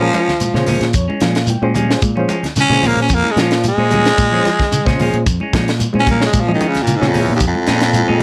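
A growling, raspy baritone saxophone takes the lead, close-miked and up front, soloing over this defiant, driving afrobeat cut from a longer piece, moving at 112 BPM in a straight 4/4 over Bb dorian and a Bbm7 chord. Beneath it, a barky reed electric piano with light overdrive and fast tremolo plays accompaniment through its built-in speakers, adding a fill from 0.4 to 2.0 seconds. A mellow, dark electric guitar plays fingered arpeggios in the background while a clean, picked electric guitar adds stabs, and a round fingered electric bass anchors the low end. A tight funk drum kit with a high-tuned snare, tight kick and hi-hat enters at 0.1 seconds, joined by thin-skinned congas struck with hard hands and a grainy shekere, both set back in the mix. Light reverb sits over the whole groove.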